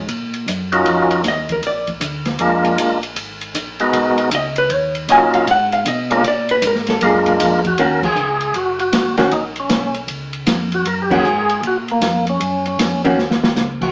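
Soulful and smoky, this brief soul jazz organ trio excerpt in Eb minor swings at 156 BPM. A mellow, round tonewheel organ with slow rotary speaker carries the bass line while an open, dark acoustic drum kit with a boomy kick sits up front, and a second, percussive tonewheel organ with key click and slow rotary takes the melody from 0.7 seconds. A clean, picked hollow-body jazz guitar takes a solo in the first half, band accents land at 8.0 and 11.1 seconds, and a drum fill closes things out, all heard from further back in a reverberant club through a small speaker.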